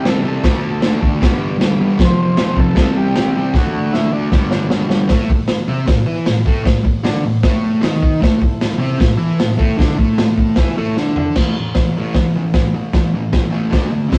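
Garage rock with a menacing, gritty edge, this cut from a longer piece charges along at 154 BPM in straight 4/4 in A minor. A fuzz guitar, double-tracked, compressed and placed up front, drives a distorted picked riff throughout, while a crunchy breakbeat kit sits just as close, with a tight kick, medium-tuned snare, dark cymbals, toms and a saturated, rolled-off top. A vintage combo organ with a buzzy tone and light vibrato carries a short melody that drops out at 4.7 seconds, and a second, very quiet reedy organ holds clean sustained chords underneath, returning briefly in the middle. The opening cycles through D, G, F and C before settling on A minor at 5.1 seconds, and from 11.4 seconds the closing stretch moves through bare A5 and D5 power chords. Drum fills mark each turn, and the whole take has the rough feel of a rehearsal room, with a moderate stone-room reverb around it.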